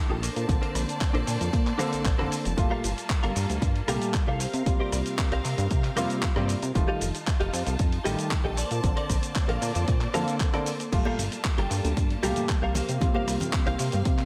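A sensual, groovy nu-disco excerpt at 115 BPM in straight 4/4, built on a looping progression of Bbmaj9, Gm9, C7sus4 and F9. An overdriven, punchy electronic kick sits up front alongside a glossy, retro chorused synth bass whose pluck and pumping sidechain drive the groove. A gritty, sampler-style soul kit adds crash, handclaps, hi-hat, rim click and shaker with tape echo, and a worn baby grand piano plays a pumping accompaniment with long sustain and echo. A bright, twangy clean electric guitar, recorded direct, picks a riff coloured by ensemble chorus and tape echo, while a focused studio string section holds sustained chords in the background. Very quiet, high-tuned congas join at 11.1 seconds, and the whole mix sits in light digital ambience with an echo-heavy character.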